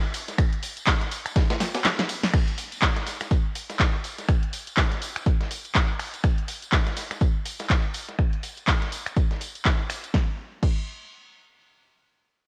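House at 123 BPM with a 58% swing on the 16ths, this uplifting, feel-good cut from a longer piece opens on a drop with a drum fill from 1.6 to 2.3 seconds, during which the electronic kick briefly drops out from 1.8 seconds. A dry, punchy analog kick sits up front alongside a punchy analog drum machine of crash, ride, snaps, handclaps, hi-hat and snare, while a gritty, overdriven sampler-style kit adds hi-hat and a medium-tuned snare with sidechain pumping on the hats. A close tambourine sits in the background, and the whole track carries a cassette home-recording character with light digital ambience.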